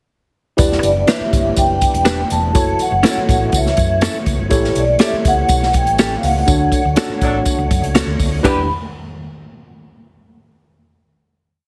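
Passionate and urgent, this short uptempo 1960s-style soul piece drives along at 122 BPM in a straight 4/4, moving in E dorian through Em7, F#m7, A7 and Dmaj7 before landing on a final Em7 chord at 8.4 seconds. A polished, airy big-band drum kit sits up front with a punchy kick and medium-tuned snare, playing a backbeat soul groove. Beneath it, a round, hollow-body short-scale electric bass plays a syncopated, melodic line with muted ghost notes and slides, while a jingly tambourine marks every beat. A worn, slightly out-of-tune tine electric piano pushes close-voiced chords with grace notes, a lightly overdriven tonewheel organ holds a full sustained pad through a slow rotary speaker and chorus vibrato, and a direct-recorded clean guitar adds short, compressed chops on the backbeat. Entering at 0.8 seconds, a ringing, metallic vibraphone with fast motor vibrato carries motif-based call phrases, and from 7.0 seconds a distant, roomy horn section punches tightly at phrase ends during a band accent. 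The mix has light reverb and a heavily compressed, radio-like sound.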